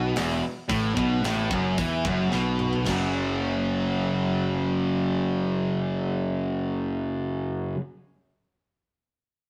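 This heavy metal excerpt, cut from a longer piece, opens with two picked electric guitars playing a riff together in F# minor at 110 BPM in a straight 4/4. One guitar is dark and sludgy with overdrive, the other bright and tight with distortion, and both sit up front. A fingered electric bass holds down the low end with a growly fuzz tone, and a tight acoustic metal kit joins at 0.2 s with bright cymbals, a medium-tuned snare, a tight kick, hi-hat, crash and toms. The drums play a fill from 2.3 s and drop out at 3.0 s, just as the harmony moves from an F# minor chord to an F#5 power chord for a new section. The moderate stone-room reverb and rough rehearsal-room sound give the epic, relentless mood a raw, live feel.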